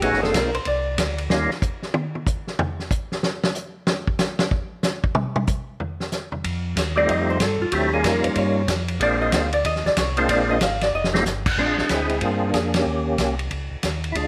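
A swinging 4/4 groove drives this soulful, bluesy soul jazz organ trio fragment, where a dry, fat-snared drum kit with dark cymbals solos from 1.3 to 6.4 seconds, a round, mellow organ bass through a slow rotary speaker returns at 6.4 seconds, and at 7.0 seconds a compressed, picked hollow-body electric guitar solo rejoins an up-front, percussive organ melody with key click and chorus vibrato in a moderate large-studio reverb.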